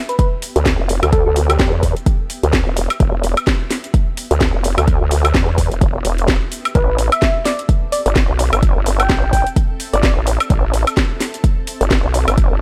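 A swung groove at 128 BPM drives this gritty, swaggering bass house excerpt in E minor, cut from a longer piece. A punchy, up-front electronic kick and a layered house kit of cracking snare, metallic hi-hats, shaker and woodblock, both carrying studio reverb, run nearly the full length. From 0.6 seconds a nasal, resonant vowel-sweep wobble bass takes the low end, its formant-filtered tone saturated, compressed, thickened with chorus and shaped by sidechain pumping. A round, keys-like FM lead with gentle vibrato appears in two phrases, the second arriving at 6.8 seconds, its decaying notes coloured by chorus, phaser, cassette tape grain and tape echo. Underneath, a very quiet granular cloud pad blurs and evolves in the background, while the harmony moves from Em to Am at 6.8 seconds within a digital ambience.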